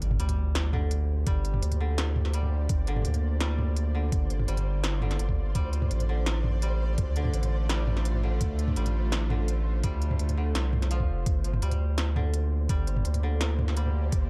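A thick, saturated sub bass sits up front in this cinematic, spacious half-time drum and bass excerpt, joined by a gritty, thumpy electronic kick from 1.3 s, an industrial kit with a clanging snare and smooth hats, woody koto arpeggios played with fingerpicks through tape echo, a tense string-like drone with ring modulation, vibrato and sidechain pumping, a flickering granular texture in the background, and a faint electronic impact at the start, all within a dark production that moves from Gm to Dm and back.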